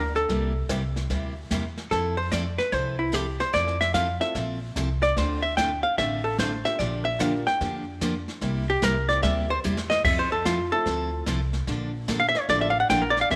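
A dark, clean hollow-body archtop guitar opens this down-home western swing excerpt, carrying the melody up front as a solo from the very first second over a woody pizzicato upright bass. A jazz brush kit, airy and polished with dark cymbals, a medium-tuned snare and a boomy kick, joins almost at once, along with a picked steel-string acoustic guitar picking out the changes in a warm auditorium tone. At 4.2 seconds a mellow, boxy upright piano slips in behind everything else. The harmony moves through easy seventh and sixth chords with a swinging country lilt. A brief drum fill at 9.6 seconds nudges the phrase along. The whole band sits in a moderate echo-chamber reverb with a small-room ambience.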